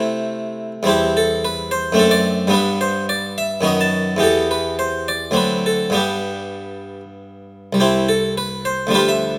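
A solo harpsichord opens the recording at once, plucking out a flowing, dance-like movement in the manner of a baroque suite in G major and 3/4 time. The tempo sits around 96-110 BPM but breathes with a rubato feel, so the pulse gives and takes like a graceful courtly dance. Played on a single set of strings in the Flemish style, the instrument sounds airy and round, sitting up front in the mix while a moderate stone-room reverb lends a soft halo. The harmony moves from A minor over C through D7 and a resolution to G, then passes through B7 and E minor before settling on G again around 6.0 seconds. At 7.8 seconds the opening material returns on a C chord, and the passage ends at 9.4 seconds as a short cut from a longer piece.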